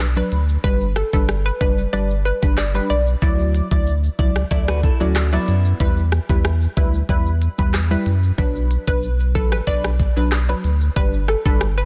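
A hypnotic, sultry dancehall groove at 93 BPM in B minor opens at once with an up-front electronic drum kit of knocking kick, smooth hi-hats, handclaps, rim clicks and shaker, a deep, round sine sub bass, and punchy sawtooth chord stabs that pump against the beat under chorus, their moving notch filter giving them an evolving edge over Bm, G, Dadd9 and Em. A bright analog pluck with a noise layer carries the melody between A4 and D5 from 0.6 seconds, treated with chorus and delay, before a small, fingerpicked nylon-string guitar slips in brief warm arpeggios around 4.5 seconds. The pluck returns at 8.9 seconds in this dense, heavily limited modern mix, set in digital ambience and cut from a longer piece.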